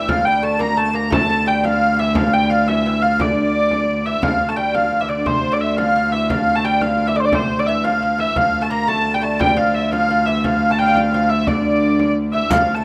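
This medieval dance opens with a reedy hurdy-gurdy carrying the melody up front, over a fingerpicked lute second line and a viola da gamba holding a low drone on D2. A deep frame drum played with hard hands joins at 0.1 s, marking a straight 6/8 feel. The mood is ancient and mysterious, with the gamba's rich, floating tone and light vibrato sitting beneath the nasal, wheel-bowed melody, while the lute's gut double strings sound delicate. A brief riq with dark jingles appears only at 12.5 s, just before this cut from a longer piece ends. Light reverb and small room ambience give the rough home demo mix an intimate character.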